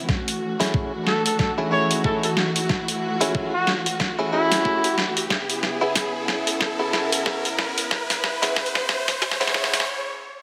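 A lush hall reverb and a sweeping filter shape this gritty, playful glitch hop build-up at 92 BPM in F# minor with swung 16ths, where a bowed string section carrying 12-bit sampler crunch and sidechain pumping sustains F#m7 and C#m7 chords under an electronic riser, a pitched-down boom bap kit with an up-front snare and hi-hat, a thumpy electronic kick, bright clean guitar stabs with digital delay, and a distant trumpet melody with scooped notes from 1.1 to 5.0 seconds, before a brief break at 9.9 seconds.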